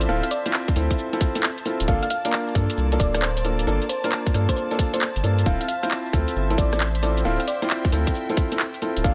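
Two-step UK garage at 134 BPM in D minor, with a late-night, skippy feel from its 66% swing on the 16ths, moving from Dm9 to Gm7 and back to Dm9 in this short cut from a longer piece. A round, tine-like FM synth pluck with chorus carries the melody over muted, veiled string-section chords that pump behind it, while a grand piano adds stabs roughened by vintage 12-bit sampler grit and tape echo. A thick, saturated sub bass and a layered garage kit of handclaps, hi-hat, rim click and shaker sit up front in a dry mix, joined by a tight electronic kick from 0.7 seconds.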